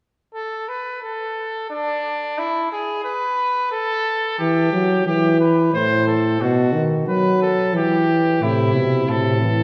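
A classical, imitative canzona for brass ensemble in A minor and 3/4, this solemn, driving excerpt moves at 89 BPM, heard from further back in a scoring stage with a wet reverb. A clear, distant trumpet opens alone at 0.3 seconds with the second line, joined at 4.4 seconds by a dark, close-miked euphonium accompaniment with a soft attack as the harmony moves through Em, Am and B. At 8.4 seconds a mellow bass trombone with light vibrato and a smooth top enters on the bass, and the passage breaks off shortly after.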